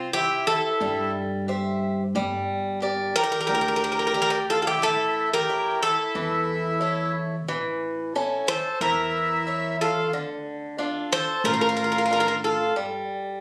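A straight 4/4 pulse at 90 BPM carries this moody, brooding Greek folk bouzouki-band excerpt in D minor, moving from C through Gm and A to Dm. Up front, the picked, metallic double strings of the bouzouki carry the melody, with some octave-doubled strings, while a reedy, full accordion plays a second line beneath it. Both stop at 12.7 s, leaving the bright, boxy swing-picked acoustic guitar with its finger squeak and the woody, thumpy pizzicato upright bass to ring on to 13.4 s, all heard as if captured on a phone in a compressed, reverberant club.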